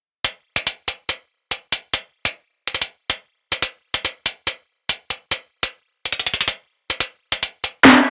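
A drill drum kit opens the excerpt at 0.2 seconds, its electronic handclaps, hi-hat and sharp snare pushed up front with overdrive grit and rounded, mellow hats. This ominous, tense hip hop runs at 142 BPM in 4/4 with a half-time feel, the kit carrying on alone until 7.9 seconds. Light reverb and a small-room re-recording give the home cassette sound a boxy, lo-fi character.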